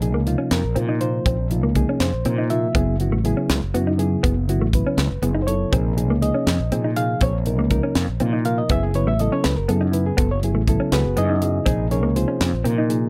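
Funky and slick, this excerpt of electric jazz fusion sits at 81 BPM in a straight 6/8, settled in Bb minor. A reedy electric piano, lightly overdriven and heard through its built-in speakers, carries the accompaniment up front, while a round, dark fretless bass, direct and amped, holds the low end just as close. A tight funk kit with a high-tuned snare, a tight kick and hi-hat sounds dry, airy and polished. A mellow, clean guitar, fingered and compressed, adds stabs coated in lush chorus from 0.1 seconds. The harmony rocks between Bbm11 and Gbm11 every few seconds, and a light reverb gives the whole 13-second passage a subtle sense of space.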